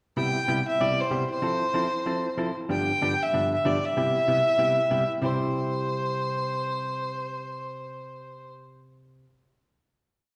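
A dark, woody fiddle and a clean hollow-body electric jazz guitar start together at 0.2 seconds in this short, cheerful country piece, swinging along at 190 BPM in 4/4 in C major. The bowed fiddle, a single player with light vibrato, carries a motif-based melody built from period phrases, sitting up front yet sounding slightly distant. Beneath it, the fingered, compressed guitar keeps a steady four-to-the-bar rhythm through a progression of major seventh and dominant chords. After the brief opening section the pair settle onto a final C chord at 5.2 seconds, with the fiddle stopping at 8.5 seconds and the guitar ringing on until 9.3 seconds. The two play live together in one room, bathed in a wet, large studio reverb.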